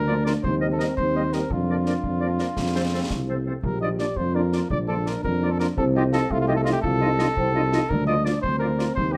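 This military-style march for wind band moves at 113 BPM in a straight 6/8, rousing and proud in Bb major, and is cut from a longer piece. A mellow cornet carries the melody up front with light vibrato in a classical style, while a mellow tuba with a soft attack anchors the bass just as prominently. A clear euphonium sits distant and roomy in the background on a second line, joined by a clear woodwind section doubling the cornet's register, and a dark French horn section adds very quiet accompaniment from further back. The concert snare and bass drum enter at 0.3 seconds, sounding close and dry with dark cymbals against the moderate large-studio reverb. The harmony moves from Cm7/Eb through Bb/F and F to Bb, then F7/C and Bb/D, all within a dark, warm production.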